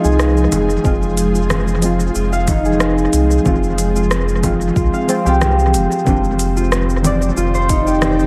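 Organic downtempo in F dorian at 92 BPM with a light 16th-note swing, this earthy, meditative excerpt pairs a dark, nasal chord stab with tape echo and an ethereal, detuned pad washed in ensemble chorus, both pumping against a round sine sub bass, while a thumb-plucked concert harp rings out arpeggios through analog delay over smooth hi-hats, congas, rim clicks and shaker, joined by a deep, tape-warm electronic kick from 0.8 to 7.8 seconds, the chords moving from Fm to Cmadd9/F at 6.1 seconds in an echo-heavy mix with spring reverb and digital ambience.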